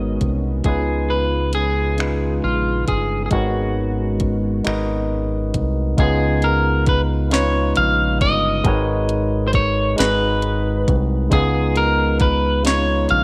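Slow R&B in six-eight at 45 BPM, this short passage from a longer piece feels sultry and yearning, its chords swaying between G#m11 and C#7. An electric guitar at the edge of break-up carries the melody up front, its tone twangy and slightly broken-up, playing between E#4 and E#5. Beside it, a barky tine electric piano heard through a combo amp fills out the accompaniment with a clean, forward sound, while a deep dub fingered bass sits low, dark, round and punchy. The smooth, electronic, tape-warm drum kit enters at 0.2 seconds with finger snaps, a soft kick, a sharp snare and warm hi-hats. For the first 6.0 seconds, a shimmering, retro pulse-width pad glows in the background with mellow chorused chords, then it drops out as the second section begins. Light reverb gives the whole a gentle sense of space.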